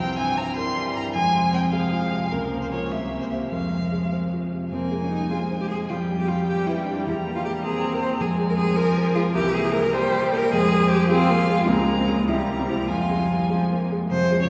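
A vintage-toned grand piano sits up front alongside a close, focused cello that carries the second line, while a distant, clear violin sings the melody with vibrato and a rich, smooth viola fills in the accompaniment from the background. This stormy, dramatic excerpt from a quick classical-period movement for piano quartet moves in 6/8 at 102 BPM (dotted quarters) in F minor, played with rubato and built on chords such as C7, Fm, Bbm/Db and G7/F. A wet cathedral reverb places the ensemble further back in the room, and a new section begins at 4.7 seconds.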